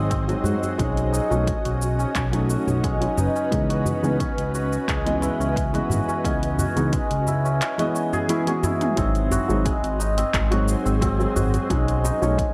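Hypnotic and meditative, this organic downtempo piece in C# minor at 88 BPM sets ringing, shimmering santur arpeggios with delay and a filter sweep up front over a muted felt upright piano, an ethereal airy pad with chorus and tremolo, a smooth up-front synth bass that pumps with the piano and pad, a punchy overdriven electronic kick and deep house kit of handclaps, hi-hat, shaker and toms, and tight, cracking djembe in the background, with a drum fill at 8.6 seconds leading into a new section at 9.0 seconds.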